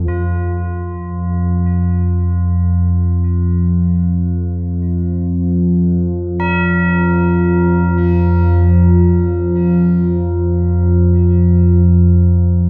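A cavernous, dark ambient drone in free time, cut from a longer piece and set in a vast, echoing space with a cassette-tape grain. An up-front analog drone, warbling and vintage with a sawtooth and pulse-wave character, sustains throughout under chorus and a filter sweep. From 0.1 seconds, solemn, metallic tubular bells struck with a rawhide hammer fade in with ringing arpeggios through tape echo, sitting well back in the mix over an Fsus4 chord.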